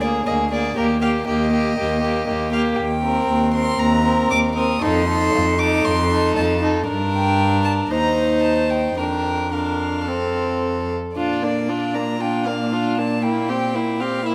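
Set in a wet recital hall with a long reverb tail, this cheerful, spirited excerpt from a quick classical-period string quartet movement runs at 117 BPM in 4/4 with a rubato feel, in Bb major. Two violins with close, reedy, period-style gut-string tone carry the melody and a second line, while the viola adds smooth-topped accompaniment with light vibrato and the rich cello sits up front on the bass. Around 11.2 s the music moves into a new section, settling on a Bb chord.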